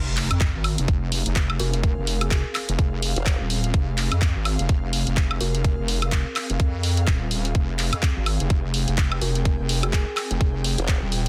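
Bass house with an aggressive, bouncy swing, cut from a longer piece, opens on a very quiet electronic impact as a heavy, detuned, saturated wobble bass pumps under a tight, up-front electronic kick and a layered garage kit of handclaps, hi-hat and woodblock. A second, formant-filtered wobble bass cuts in briefly at 3.2 and 10.8 seconds, while an ethereal, airy pad with ensemble chorus and built-in reverb hovers in the background. Soft, woody kalimba plucks with tape echo ring out in short snatches, first at 1.6 seconds, all within a dense, heavily limited modern master.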